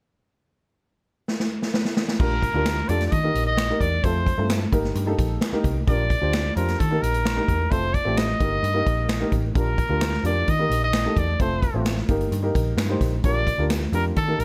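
A straight, uptempo 1960s-style soul groove opens with a drum fill on the swinging big-band kit at 1.3 seconds, its punchy kick and medium-tuned snare sitting up front in a big, natural-sounding room. At 2.2 seconds a bright, vintage trumpet takes the solo melody with light vibrato, over a round, foam-muted picked electric bass and a dark, woody upright piano that sounds worn, slightly detuned and intimate, its action noise audible. Distant finger snaps join in the background at 2.7 seconds, adding to the warm, uplifting mood of this passage cut from a longer piece.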